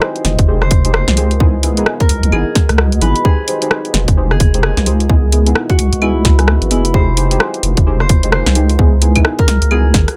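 UK garage in a two-step style at 130 BPM, this bouncy, skippy excerpt from a longer piece swings its sixteenths over a loop that alternates between Fm9 and Dbm9. An up-front electronic kick, tight and layered, enters at 0.4 seconds. Alongside it sits a garage kit of claves, rim click, bright hats and a cracking snare. A deep, soft wobble bass with chorus sits prominently underneath. Overhead, a mellow chord stab mixes detuned triangle, sawtooth and square tones, decaying through chorus, phaser and tape echo, while a ringing, fingerpicked Celtic harp carries the melody through digital delay. A moody, slow-attack ambient pad with sidechain pumping and its own reverb rests in the background of an otherwise dry, loud mix.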